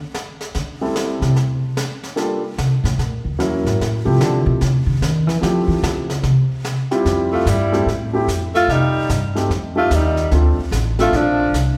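A brushed drum kit with a high-tuned snare opens this playful, relaxed small-group swing excerpt in F major at 148 BPM, quickly joined by a woody, thumpy pizzicato upright bass that carries a solo through the first 7.1 seconds, while a polished, present upright piano comps over chords like Am7, Gm9 and Fmaj9. At 7.3 seconds a breathy alto saxophone with light vibrato takes the melody, joined by a raspy, growling tenor saxophone on a lower second line. The bass and piano sit up front, and a lush recital-hall reverb gives the group a spacious, churchlike glow.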